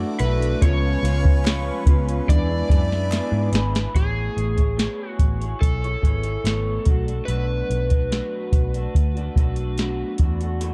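A soft vintage rhythm box sets a straight, laid-back 4/4 pulse at 72 BPM, its deep kick, crisp snare and metallic hats sitting up front with a tape-tinged character, and a drum fill carries the music into a new section at 3.9 seconds. Beneath it, a dark, round, foam-muted electric bass holds the low end. An electric guitar through a small old amp plays slightly broken-up, compressed accompaniment in lush chorus and vibrato, while an overdriven slide guitar carries the melody with subtle chorus and tape echo. In the opening bars, warbling, detuned lo-fi synth keys and a swirling phased analog pad fill out the chords before both drop away at the section change, and a very quiet group handclap enters at 1.4 seconds. This short bedroom-pop excerpt in A major has a nostalgic, dark production with little reverb, moving from E9sus4 through C#7 and E7 to a relaxed Amaj9 and Bm7.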